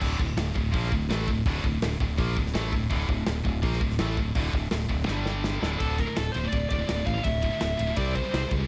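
Aggressive and heavy, this heavy metal fragment drives at 166 BPM in D minor, with two bright, high-gain distorted guitars picking a riff over a growly, up-front fingered bass and a modern acoustic drum kit with a tight kick and medium-tuned snare, captured as a small-room home recording on cassette. The chords move from Dm through G5 and D5 to C5, and a drum fill at 5.1 seconds leads into a new section at 5.8 seconds, where a warm, up-front lead guitar enters with distortion, tape coloring and analog delay.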